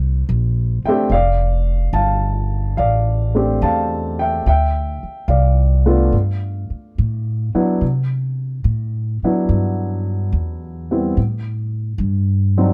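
Swung eighths at a slow 72 BPM in 4/4 give this melancholic, wistful jazz ballad an unhurried lilt, cut from a longer piece and moving through lush harmony from C13 and F69 to Dm9, G9 and Cmaj9#11 before settling on A7(no3). A warm concert grand piano with deep bass and short sustain plays the accompaniment, and a woody pizzicato upright bass with steel strings carries the low end, both sitting up front throughout the 12.7 seconds. The close, detailed recording is dry and intimate, with little reverb.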